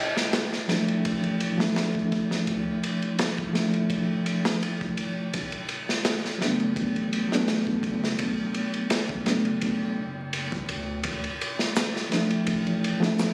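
A very quiet, ringing Celtic harp opens this dark, cinematic trip hop excerpt with fingerpicked arpeggios that stop at 1.7 seconds, as a crunchy, gritty breakbeat kit of tight kick, snare and dark ride cymbal settles up front at 84 BPM with a light 16th-note swing. From 0.7 seconds a reedy, mellow electric piano with fast tremolo and tape echo carries the accompaniment over Dmadd9 and Bm7, while a round, deep analog bass with tube saturation sits in the background, and a distant tube shaker joins at 11.8 seconds. The whole excerpt has a phone-in-the-room feel with club reverb, vinyl crackle and compression, tuned to A4 = 438 Hz.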